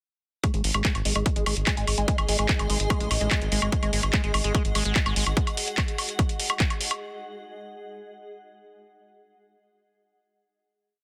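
A squelchy, resonant acid line carries this alien, driving psychedelic trance piece, with a filter sweep, phaser, cassette-tape grit, sidechain pumping and dub echo as its three-step loop drifts against the bar. Underneath, an overdriven four-on-the-floor kick and a rolling sixteenth-note analog bass sit up front with a drum-and-bass kit of metallic hats, handclaps, a programmed backbeat and a high woodblock. From 1.4 s a blurred granular cloud pad drifts through slowly shifting chords in its own reverb, all within a dense, heavily limited modern master.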